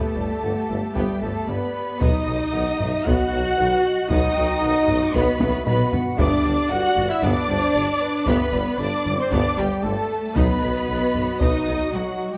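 Bathed in a wet scoring-stage reverb with a softened top end, this heroic, triumphant excerpt of an epic orchestral film score moves at 115 BPM in G major, alternating between G and B chords. A lush violin section carries the portamento-laden melody while a hollow, airy flute and a close studio violin section trace second lines, distant violas fill the accompaniment, punchy French horns hold sustained chords and tight, soft-attack trumpets add stabs. Rich cellos anchor the bass, joined from 0.2 s by a clear vintage tuba and distant double basses, and a hard-stick taiko ensemble enters at 1.0 s, its drum fill at 5.4 s driving the music forward.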